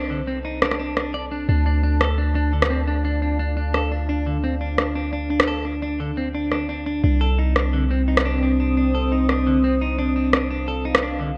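An up-front electronic rim click with gated reverb enters at 0.6 s over a deep, mellow sine 808-style bass, setting a heavy, tense half-time drum and bass groove at 173 BPM in D phrygian, while a dark, detuned analog pad holds slow-attack sustained chords with chorus and a bright, twangy clean electric guitar picks compressed arpeggios through delay, all within a moderate plate reverb and bright 1980s-style digital production.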